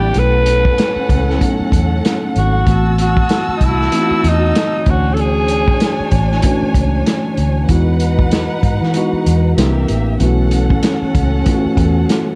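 Lush 1970s-style soul at 96 BPM in 4/4, with a swung sixteenth-note feel and a romantic mood, cut from a longer piece. A raspy, growling alto saxophone carries the melody up front with vibrato, playing only until 6.1 seconds, while a dark studio violin section bows a second line with expressive vibrato and portamento throughout. A slightly out-of-tune tine electric piano supplies accompaniment through a lush chorus, and a round, foam-muted fingered electric bass sits prominently underneath. A muffled, lo-fi vintage drum kit in a small room keeps time on hi-hat, tight kick and a medium-tuned snare, its top rolled off. The harmony moves through B9sus4, Am6, Dmaj7, Emaj9 and C9 before returning to B9sus4, all wrapped in light reverb and a dark, warm studio production.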